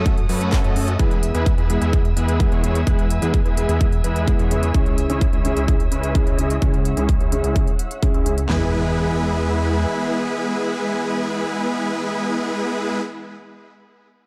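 Triumphant and anthemic, this excerpt of festival progressive house moves at 128 BPM in E major, with a huge, bright, detuned supersaw lead riffing up front over sustained background chords from a soft, bowed string section, while a dark, mellow baby grand piano accompanies. A fat, thick analog bass with tube saturation and a big-room drum kit with a punchy kick, huge snare, handclaps and crisp hats drive the opening section, while filter sweeps shape the lead, bass and strings, and sidechain pumping works through the lead, bass, strings and piano. The drums drop away as an electronic impact arrives at 8.5 seconds, and the bass follows shortly after, leaving the lead, strings and delayed piano ringing out over an E chord in a dark, lightly reverberant production.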